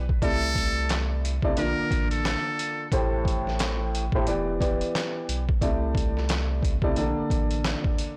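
Dark and tough, this boom-bap hip-hop excerpt rolls at 89 BPM with a swung 16th feel, built on a gritty, pitched-down sampler drum kit of thumpy kick, medium-tuned snare, hi-hat and handclaps, re-recorded in a small room, alongside a round sine sub bass with transformer saturation. A dark, woody upright piano with a cassette-tape character carries chords from C69 through Bbmaj7, Am7 and Em7 from 0.2 seconds to the end at 8.2 seconds. A buzzy, breathy trumpet with a metal mute and analog delay plays a short jazz-style solo with light vibrato from 0.2 to 2.9 seconds, all set in a blown-out, overdriven digital ambience.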